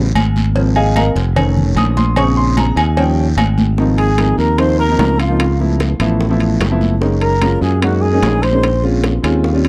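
A straight 4/4 groove at 148 BPM drives this sunny, danceable Afro-Cuban jazz passage in Ab major, cut from a longer piece. A growly, punchy fingered electric bass sits up front. The percussion joins at 0.2 seconds: ringing agogo bells and metal-shelled timbales sound close and dry, a raspy guiro adds texture, and damped high-tuned congas and tight cowbell and bongos struck with hard hands sit in the background. A smooth, vintage-toned warm grand piano carries the chords from the start and takes the spotlight in the opening stretch, moving through rich harmonies such as Ab69, Faug7 and Eb9. At 4.0 seconds a dark, breathy trumpet enters with the melody, its soft attack, scooped notes and vibrato giving it a whispered, intimate jazz voice set back in the room. A mellow silver flute with a crisp attack traces an unsteady second line in the background through tape echo, and the piano adds a fill at 9.0 seconds, all within a dry, close 1970s-style studio sound with light reverb.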